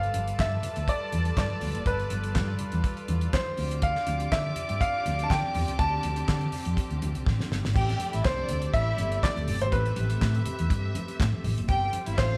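A clear grand piano carries the melody from the opening moment, its intimate sound catching audible action noise, over a fat, tight 70s drum kit, a dark, round hollow-body electric bass and two layers of bowed strings in this danceable, sultry disco excerpt at 122 BPM in A minor. The dry, up-front drums mark a straight 4/4 with kick, snare, hi-hat, handclaps and crash cymbal, while very quiet congas with a thick, medium-tuned skin sit softly beneath. A warm chamber violin section plays a second line with light vibrato, a soft attack and a smooth top, while a rich, lush studio string section holds sustained chords with an even, biting edge. The harmony moves from G9 to Dm11, and a drum fill at 7.3 seconds leads into a new section at 7.8 seconds on Am11, closing on G9sus4. The band plays live in one room, wrapped in a moderate large studio reverb.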